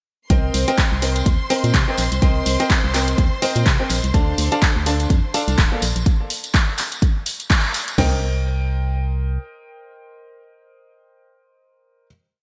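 A bittersweet, energetic piano house track at 125 BPM in C dorian opens at 0.3 s straight into the drop. A clear grand piano plays a riff of close-voiced, dotted-rhythm chords with long sustain and audible action noise, treated with lush chorus, delay and sidechain pumping. Beneath it, an organ-like FM bass, hollow, dark and up front, drives a funky syncopated line with fast, percussive, decaying notes that also pump with the sidechain. A layered house kit sets a four-on-the-floor kick with cracking snare, toms and crash, while a dry analog drum machine adds programmed hats and handclaps on the backbeat, and a compressed, saturated tambourine sits in the background. A smooth chamber violin section with vibrato holds sustained high chords until 6.1 s. After a band accent at 7.5 s, the piano, joined briefly by the FM bass, rings out on a final Cm7 chord from 8.0 s, all in a bright 1980s-style digital production with light reverb.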